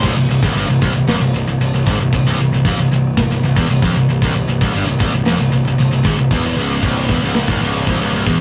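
A bright, high-gain distorted guitar sits up front playing a low riff in this heavy, relentless metal excerpt, alongside a second distorted guitar set further back in the mix. Beneath them, a growly, fuzz-laden picked bass adds overdriven weight, while an acoustic drum kit with a tight kick, medium-tuned snare, crash and china cymbals drives a straight 4/4 feel from the front of the mix. The rough rehearsal-room sound carries saturated warmth and a short booth ambience.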